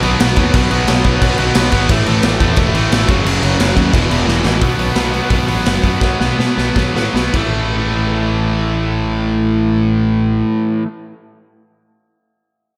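Driving straight 4/4 punk rock, energetic and upbeat and cut from a longer piece, built on an up-front overdriven guitar riff over B5, A5, F#5 and E5 power chords. A distorted guitar also plays a riff in the background, and a very quiet double-tracked high-gain guitar stops at 4.6 s, where the music slows after a drum fill. Underneath sit a growly, direct picked bass and a gritty, saturated garage kit of punchy kick, medium-tuned snare, hi-hat and crash in a pumping stone room, with the drums ending at 7.4 s, under light small-room reverb.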